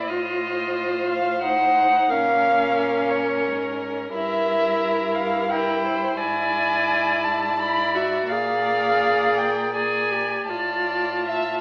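Heard through a narrow AM-radio filter and a wet recital-hall reverb, this melancholic, yearning excerpt from a slow romantic string quartet movement sways in a rubato 3/4 as a rich, distant first violin sings the up-front melody with vibrato and expressive portamento, a second violin adds a smooth, even line beneath it, a clear, close viola carries the accompaniment, and a quieter cello anchors the bass with its own vibrato and sliding portamento.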